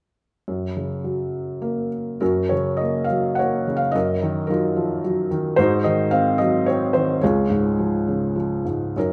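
Sunny and relaxed, this brief classical excerpt for solo piano drifts in 3/4 with a rubato feel around 98-112 BPM in F# major, its felt-muted upright sounding soft, mellow and intimate up front from 0.5 to 9.1 seconds across a range of C#2 to F#5, moving from F# through D#madd9/F# and G#7 to C# within a moderate scoring-stage reverb.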